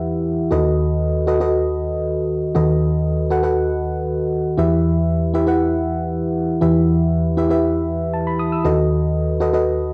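A solo FM electric piano, full-bodied and dark with a fast attack, decaying tones and a noise layer, sits up front and carries this dramatic, nostalgic pop fragment at 118 BPM in E harmonic minor, spanning a low D#2 up to E6. It moves between Em and B7/D# over roughly 10 seconds, with the piano passed through a cassette tape effect. The home cassette recording sounds dulled in the top end and sits in a wet studio reverb with a short 0.6-second decay.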